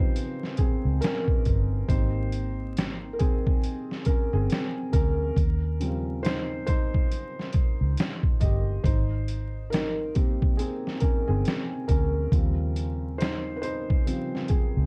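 A felt-muted upright piano carries this mellow, nostalgic lo-fi hip hop excerpt, its soft, intimate tone taking a solo role across the whole fifteen seconds while colored by cassette tape. The harmony rocks between Eb13 and Abmaj9 in a relaxed 4/4 with a swung sixteenth-note feel. A trip hop sampler-style drum kit sits up front from 0.2 seconds, its pitched-down, gritty sound built from a thumpy kick, a medium-tuned snare and hi-hat, compressed and re-recorded in a small room. At 0.9 seconds a vintage muted fingered electric bass enters low underneath, round and foam-muted with an amped, shadowy edge. Light reverb, vinyl crackle and a dark production give the short cut a hazy, late-night character.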